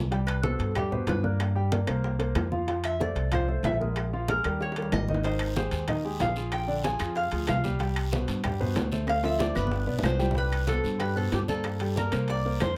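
A metal-body resonator slide guitar carries the melody in this sunny, danceable Afro-Cuban jazz excerpt, its nasal, metallic tone picked with fingerpicks and played with a steel bar in a solo that runs from the opening to 10.4 seconds. Beneath it, a growly, woody upright bass sits up front with its pizzicato line, joined by a polished concert grand piano whose deep bass and short sustain give the accompaniment a present, warm shape. The percussion section fills out the groove in straight 4/4: low-tuned congas with a thin skin in the background, tight, high-tuned bongos kept very quiet, ringing metal-shell timbales that sound compressed and saturated, and woody claves. A raspy guiro joins at 5.2 seconds, and drum fills mark the turns at 4.6 and 9.1 seconds. The harmony moves through chords such as Gm, Abmaj13 and Dm7 before a new section begins at 10.4 seconds, all captured with close, detailed microphones and light reverb.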